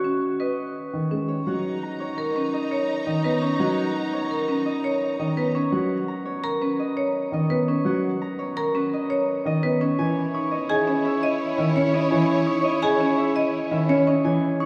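Classical minimalist pattern music with a bright, hypnotic mood, cut from a longer piece and set in a vast, echoing cathedral space. A ringing, thumb-plucked Celtic harp carries the melody over marimba arpeggios struck with hard mallets, which sit up front with a dark, percussive edge. A vintage-toned grand piano enters at 0.9 seconds with smooth, up-front accompaniment as the harmony moves from Emaj9 to Bmaj7 and later to C#m. From 1.5 seconds, a lush bowed violin section with vibrato holds sustained chords while a soft-attack clarinet traces a second line in the background, and both return for a second passage later on. Woody, dry xylophone arpeggios played with rubber mallets join in the background at 6.4 seconds, adding octave-tuned color to the repeating patterns.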